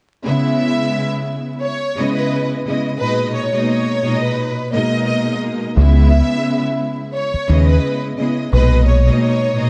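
A round, up-front fingered electric bass with a deep dub tone enters at 5.8 seconds and anchors the second half of this dark, gritty boom-bap hip-hop excerpt, set at 87 BPM with a lightly swung 16th-note feel. Before it, a lush bowed string section with cassette-tape colour carries the accompaniment from 0.2 seconds, and a close violin section with smooth vibrato sings the melody from 0.6 seconds over a C#m7 to G#madd9 progression. The dry, warm production adds vinyl crackle and keeps the top end dull.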